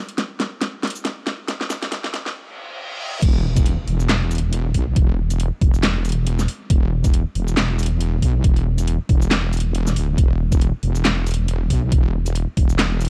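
A heavy, saturated wobble bass drives this deep dubstep excerpt at 138 BPM in a swung half-time feel, its detuned sawtooth and sine layers thickened with chorus and sitting up front in the mix from the drop at 3.2 seconds. Before that, a filter-swept build-up brings a drum fill and a brief stop at 2.4 seconds. A reverse cymbal then leads into a distant electronic impact. Up front, a knocking electronic kick and a layered drum kit with a huge snare, handclaps, shaker, crash and metallic hi-hats carry a tape-warm grit, and the dry, gritty cassette sound gives the cut a cavernous, meditative mood.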